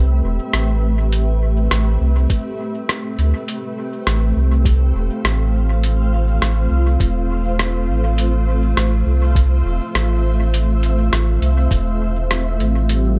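A hazy ambient dub excerpt at 102 BPM in swung 4/4, tuned to A4 = 435 Hz, opens with a blurred, detuned granular cloud pad holding Am9 and then F over a round, up-front sub bass, joined at 0.5 s by a muffled, tape-warm lo-fi sampler-style kit of hi-hat and rim click trailing dub echo, then a thumpy electronic kick at 2.3 s, with a bubbling, resonant stepped-filter texture with chorus surfacing at 12.9 s in a deep, mostly dry mix.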